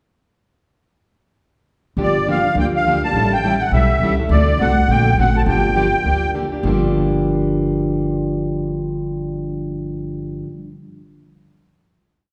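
A wet recital-hall reverb surrounds this short, complete piece of bittersweet, virtuosic acoustic string swing in the jazz manouche style. Up front, a reedy, shimmering musette accordion plays a motif-based melody of call phrases from 2.0 to 6.3 seconds, over a boxy parlour-style steel-string guitar picking four to the bar with short accents on two and four. Beneath them, a woody, thumpy pizzicato upright bass on gut strings plays roots and fifths in two-beat time with walk-ups, sounding through the final chord with the guitar until about 10.5 seconds.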